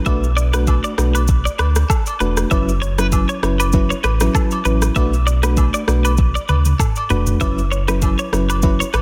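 Afrobeats with a smooth, mellow, lightly swung feel, cut from a longer piece, where a deep, sustained sub bass with octave and an up-front electronic afro-pop drum kit, with its deep kick, rim click, shaker and toms, carry the groove, and a drum fill arrives at 6.2 seconds. An FM electric piano with tremolo lays down warm, decaying chords over a noise layer, alternating Bm7 and F#7sus4, while a bright, twangy, picked clean electric guitar plays a compressed high riff through spring reverb and delay. Agogo bells and woodblock sit in the background with an acoustic, small-room sound, all under light reverb and a dense, heavily limited modern master.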